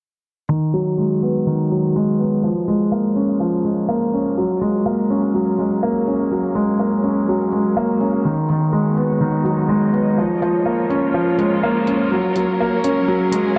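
Tender and hopeful, this short excerpt of piano and strings electronica moves at 124 BPM in F# major, built around an intimate grand piano riff with audible action noise and tape echo, set up front over a soft-attack bowed string section that holds sustained chords in the background with vibrato and shimmer reverb while fading in across the whole passage. A layered electronic hi-hat, re-recorded in a small room, ticks quietly beneath, and the chords cycle through B6, A#m7 and F#add9. The dark production is bathed in a huge ambient reverb, with a low-pass filter sweep running from 0.5 to 13.6 seconds.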